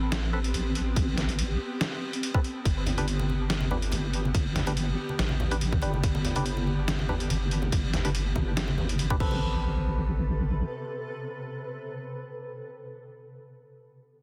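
Deep dubstep at 142 BPM in A minor, this brooding, cavernous excerpt from a longer piece opens directly on a drop with a half-time, lightly swung feel, moving from Amadd9 to G and back to Amadd9 at 9.2 seconds. A deep, soft wobble bass sits up front, dark and detuned with chorus and tube saturation, while a tight, overdriven electronic kick enters at 1.0 second. A gritty, pitched-down trip hop sampler-style kit supplies crash cymbal, hi-hat and a medium-tuned snare with a tape-warm character, and low-tuned congas with a thin, bright skin join in the background at 2.9 seconds. Above them, a hollow, wave-folded organ stab decays through chorus, phaser and dub echo, and a blurred, evolving granular cloud pad holds sustained chords in its own built-in reverb. After the drums and bass drop out, the organ and pad carry a sparser closing section, all within a dense, heavily limited master and a light room reverb.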